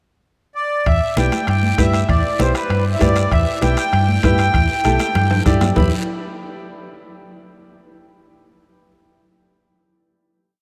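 A short, fiery cumbia in E minor at 196 BPM opens on the accordion alone at 0.6 seconds, its reedy, sweet voice with light tremolo tuning carrying a motif-based melody of call phrases up front. At 0.9 seconds the band arrives on an E minor chord: a dark, round, punchy hollow-body electric bass plays a cumbia figure in the low register, while a soft-beatered bombo and high-tuned congas with a thick-skinned tone sit in the background. A raspy, dry guiro scrapes close by, and very quiet timbales add a ringing metal-shell colour with their bell. A brilliant vertical piano joins at 1.2 seconds with short, woody triad chords, its action clatter audible in an intimate, polished sound. A drum fill from 4.8 seconds leads into a final chord that rings out in a vast cathedral reverb, giving this passionate whole piece a cavernous, echoing close.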